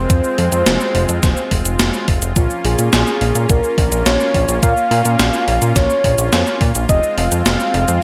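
Light reverb and a digital ambience frame this cinematic, driving synthwave excerpt at 106 BPM in a straight 4/4, built on F minor and moving to B-flat minor at 2.4 seconds before returning to F minor at 6.9 seconds. Up front, a fat, nasal analog bass with a fast filter pluck and tube saturation anchors the low end, while a gated 80s digital drum machine, also up front, drives cabasa, hi-hat and an overdriven snare with gated reverb. An overdriven, thumpy electronic kick enters with the drums at 0.1 seconds and stops at 7.0 seconds, both drum parts carrying the sound of a large room. A smooth, detuned supersaw holds sustained chords with sidechain pumping, beneath a round, mellow octave-layered lead whose sub octave, vibrato, chorus and delay give the melody a full, glowing voice. Very quiet and dark in the background, a lush, dreamy FM electric piano with a soft pad layer adds a decaying second line with chorus and tremolo.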